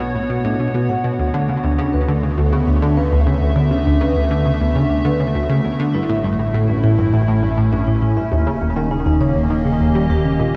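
Ambient, sequencer-driven space music at 101 BPM in a straight 4/4, mysterious and expansive, cut from a longer piece. Up front, a tight, driving sequenced synth riff with a detuned sawtooth pluck, colored by chorus, phaser and tape echo, runs beside a fat, saturated analog bass, while an evolving, warbling wavetable pad holds bright sustained chords through chorus and shimmer reverb. Close-miked vibraphone with soft mallets adds metallic, ringing arpeggios through a low-pass filter sweep, tape echo and shimmer, all set in a dark, moderate plate reverb.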